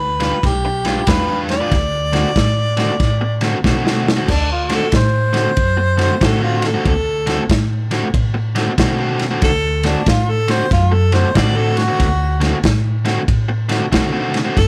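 A mellow harmonica with a touch of overdrive and a woody pizzicato upright bass open this laid-back, soulful electric blues shuffle at 93 BPM in D mixolydian, joined at 0.2 seconds by a biting, overdriven guitar riff and a crunchy, saturated breakbeat kit with a tight kick and a dark, rolled-off top. After a drum fill, the harmonica takes a jazz-style solo from 4.3 seconds, its scooped notes and light vibrato sitting up front in a dry mix cut from a longer piece.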